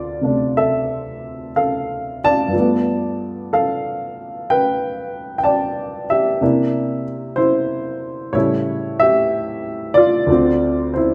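A dark, mellow baby grand piano opens the recording alone, playing solo jazz in a relaxed, sophisticated mood at a slow 62 BPM in 4/4. The eighth notes carry a gentle swing, while the phrasing stretches and breathes with rubato, and the instrument is tuned slightly low to A4 = 439 Hz. Across 11.1 seconds the harmony moves through Dm7, G9, C9 and A7 before settling back on Dm7, with the playing ranging from D2 up to A5. The piano sits up front and intimate, its short sustain and audible action noise giving the sound a natural, close-up presence. A stone room reverb with a 1.4-second decay surrounds it, lending the recording the feel of a live performance captured in one room, cut from a longer piece.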